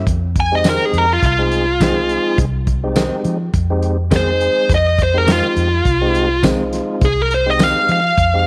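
Straight-eighth soul blues at 104 BPM in F minor, tuned to A4 = 435 Hz, this mournful, soulful fragment from a longer piece sits on a single Fm7 chord while a smooth, dark overdriven lead guitar solos up front from 0.4 seconds. A clear, percussive tonewheel organ with overdrive and fast rotary speaker carries the accompaniment, joined by a round, foam-muted fingered bass and a small-room soul drum kit with a fat snare, punchy kick, hi-hat and tambourine under a rolled-off top. A bright, direct-recorded clean electric guitar adds compressed picked stabs in the background, all set in light studio reverb.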